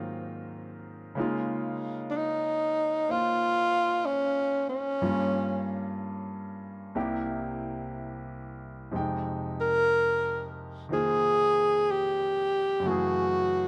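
A jazz ballad in swung 4/4, this short excerpt from a longer piece carries a tender, late-night mood at an unhurried pace. A clear, natural grand piano opens alone as accompaniment, voicing rich extended chords such as Ab13, Db69 and Fm9 across its range, sitting up front in the mix. At 2.1 seconds a breathy tenor saxophone enters with the solo melody, its mellow subtone coloured by light vibrato and scooped notes in a jazz style, placed up front alongside the piano. The harmony drifts through a Gm7b5 to C7 turn before settling onto Fm9 and closing on Gbm7. A moderate echo chamber reverb with a 2.6-second tail surrounds both instruments, and the production overall leans dark.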